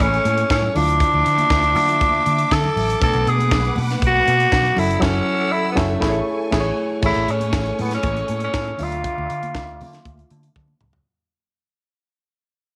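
This celebratory, glamorous disco excerpt at 119 BPM opens with a raspy, gritty tenor saxophone carrying the melody up front, its punchy pop-style tone softened by a low-pass filter. Beneath it, a reedy, worn electric piano plays slightly out of tune through its built-in speakers, while a lush, bowed symphonic string section holds sustained chords with vibrato, distant in the background. A dark, round fingered electric bass anchors the low end, and a tight funk drum kit with a high-tuned snare and small-room sound drives the straight 4/4 groove on kick, snare, hi-hat, toms and crash. Bright, high-tuned congas sit close and dry in the background, and the chords move from Amaj7 through Dmadd9, Bm7 and F#m7. A band accent lands from 5.0 to 7.0 seconds, the music begins fading out at 7.0 seconds, and a drum fill closes the clip at 10.6 seconds, all framed by light studio reverb.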